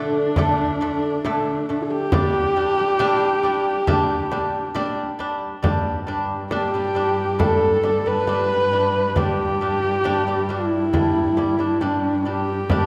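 Mongolian folk in a vast, proud mood at 68 BPM in G gong mode, this excerpt sets a husky, woody horsehead fiddle melody with vibrato and portamento up front, over bright, delicate fingerpicked lute arpeggios on double gut strings and a deep, dry frame drum played with soft hands, with a dark, distant bowed cello drone on G2 joining at 5.6 s, the ensemble sitting in the wet reverb of a church or concert hall.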